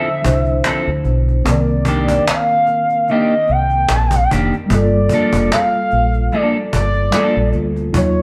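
Sultry and introspective, this short neo-soul R&B passage with a light swing drifts through Dm9, Cm9 and Gm9 chords as a smooth, detuned portamento lead with chorus and vibrato glides up front over a mellow tine electric piano and a dark, scooped clean electric guitar bathed in spring reverb. A round, deep dub fingered electric bass sits forward in the mix, joining at 0.3 seconds, while a snappy, vintage-sounding cajon with snares keeps time. The band plays live together in one room under a moderate studio reverb, and the guitar drops out at 7.4 seconds as the lead, piano, bass and cajon carry on toward the end.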